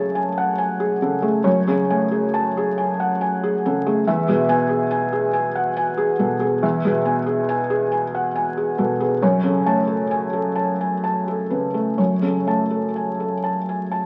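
Heard through the crackle of a very old 78 rpm record and a wet studio reverb, this short excerpt of neoclassical minimalist piano feels tender and hopeful. A felt-muted upright piano plays solo and up front, its mellow, intimate tone spanning E2 to A5 in an unhurried, rubato 3/4. The harmony moves from F#madd9 to E at 4.1 seconds and returns to F#madd9 at 9.2 seconds.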